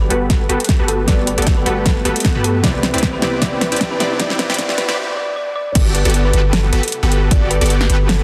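Future bass in G major at 154 BPM with a swung half-time feel, this lush, euphoric excerpt builds through a filter-swept supersaw riff, a tine-like, warbling thumb-piano-style pluck melody and a soft round pluck accompaniment (both with chorus, dub echo and sidechain pumping), a shimmering, ethereal pad from 0.8 to 5.0 seconds, a very quiet riser, and a deep, mellow 808-style bass, with a punchy overdriven kick and a pop kit of fat snare, metallic hats and crash carrying a drum fill into a brief break at 5.0 seconds before the drop lands at 5.8 seconds on Gmaj9 after a move to Cmaj9.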